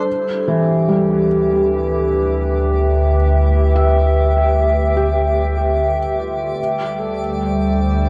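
A warbly, tape-like pad sits up front in this short, melancholic ambient fragment, its detuned, chorused chords carrying a nostalgic, lo-fi haze at a slow 74 BPM in 4/4, tuned to A4 = 438 Hz. Beneath it, a round analog bass holds a deep D2, while a felt-muted upright piano plays soft, intimate arpeggios with audible action noise, treated with dub echo. A twinkling granular texture sparkles high above, and a reedy, bright alto flute with vibrato drifts in the background with its own dub echo; both fade in gradually. An organ-like drone with ensemble chorus enters at 2.2 s and fades in softly from behind. The harmony moves from Em/D to Gsus4/D at 6.6 s. Wet spring reverb and a cassette-tape character give the spacious, echo-heavy sound a vintage feel.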